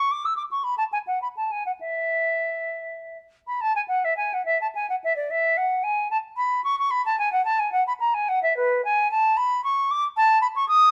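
Dark production with light reverb frames this serene, flowing fragment of a classical, baroque-style fantasia in a rubato 6/8, where a solo silver concert flute with a pure tone, crisp attack and vibrato sings expressively between B4 and E6, moving into a new section at 3.6 seconds.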